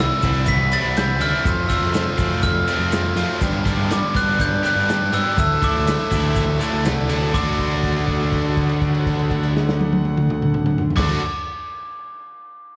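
A carefree, upbeat indie rock excerpt at 122 BPM opens with a ringing, bell-like glockenspiel melody played with soft plastic mallets and touched with slapback echo and digital delay, set over two overdriven guitar riffs (one bright and cranked with subtle chorus, the other scooped) and a growling, driven picked bass. A muffled, lo-fi vintage drum kit with dark cymbals and a punchy kick keeps a straight 4/4 in D mixolydian, while a raspy, very quiet trumpet adds a second line and a grainy egg shaker sits in the background from 0.2 to 7.6 seconds. The chords move from Cmaj7 through F, Gmaj7 and Dsus2 before settling on D at 7.3 seconds for a held note, all heard as a live gig through the venue's PA with club reverb.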